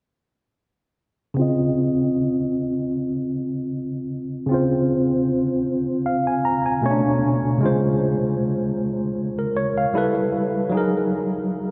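Longing and moody, this short R&B passage, cut from a longer piece, rests entirely on a tine electric piano playing accompaniment, entering at 1.3 seconds and running to the close at 11.7 seconds. The piano sits up front and sounds worn and slightly out of tune, lightly overdriven, as if heard through built-in speakers, with a low-pass filter shaping its tone and a filter sweep moving across it for the whole passage. Its harmony drifts from a lush Dbmaj9 through Bm9 and Dbmaj7 to G69 and finally Gb69, voiced across a range from low B2 up to Bb5. The groove carries a gentle swing on the sixteenths in 4/4. A wet, cathedral-sized reverb soaks the mix, leaving the whole sound hazy and dreamy.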